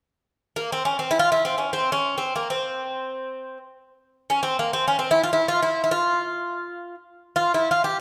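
This Turkish piece in free time, set in makam hicaz on C and tuned to A4 = 438 Hz, is a short section cut from a longer work, with a passionate yet stately mood. A lone acoustic Greek bouzouki carries the melody from 0.6 s to 8.0 s, ranging from Bb3 to G4. Its picked double strings, some doubled at the octave, sound bright and metallic up front, while a moderate reverb with a 1.7 s decay gives the resonance of a church or concert hall.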